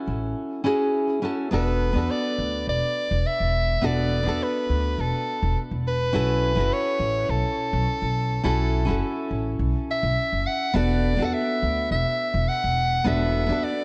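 At a straight 104 BPM in 4/4, this smooth, wistful sunset chillout excerpt sets a fingerpicked, full-bodied nylon-string guitar with digital delay and a woody, thumpy pizzicato upright bass beneath a clear soprano saxophone that enters at 1.5 s with light vibrato and tape echo, all moving between B9sus4 and E9sus4 chords in a lush hall reverb with a dark production.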